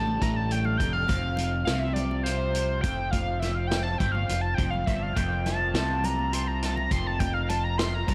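A gritty, screaming synth lead opens this short, dark and mysterious psychedelic rock excerpt, soloing up front between C5 and C6 through phaser and tape echo, its saturated sawtooth edge carrying vibrato over a fast attack and sustained notes. Beneath it from the first moment, a fat tonewheel organ holds sustained chords in the background through a slow rotary speaker, light overdrive and chorus vibrato. A bright, double-tracked overdriven guitar picks a crunchy low riff, also treated with phaser and tape echo, while a punchy fingered electric bass anchors the bottom between F1 and C2. High-tuned congas slip in very quietly at 0.1 seconds with soft, damped hands, and a vintage acoustic kit follows at 0.2 seconds, its punchy kick, medium-tuned snare and hi-hat sounding mid-forward with a rolled-off top and tape echo. Set in a straight 7/8 at 206 BPM counted in eighths, the harmony moves from Gm to F5 in an echo-heavy mix with light reverb.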